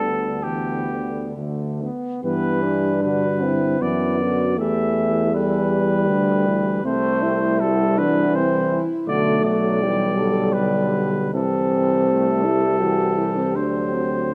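Classical and hymn-like, this serene, lyrical brass band passage in flowing triple time moves with uneven, rubato beats. A warm, vintage-toned flugelhorn carries the soft-attacked melody, with a French horn section in light vibrato shaping a second line in the background. A smooth-topped euphonium sits most prominently in the accompaniment beside a mellow trombone section, while a warm tuba with vibrato anchors the bass, all captured by close, detailed microphones in light reverb.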